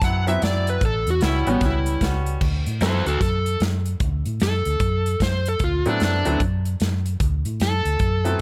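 Electric blues shuffle at 150 BPM, laid-back and soulful, with an overdriven slide guitar carrying the melody over a round, dark muted bass and a punchy, airy drum kit, all close and dry in this short cut from a longer piece. A distant saxophone section with light vibrato and tape echo adds stabs over D13 and A13 until 2.4 seconds, when the slide guitar takes a solo. A brilliant, woody upright piano with short sustain comps from 0.3 seconds, drops out at 3.0 seconds and returns at 5.9 seconds.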